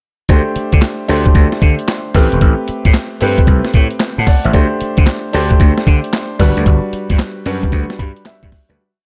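Confident and slick, this short new jack swing pre-chorus at 113 BPM rides a hard-swung, compressed, pitched-down drum-machine beat with a thumpy kick and a high-tuned snare layered with clap, while an overdriven, growly slap bass bounces through a swung synth-funk line with muted ghost notes and a clear grand piano pushes drop2 chords over D7sus4, Am9 and Gmaj7, adding a short fill at 7.7 seconds as the dark, dry mix fades out from 6.7 seconds.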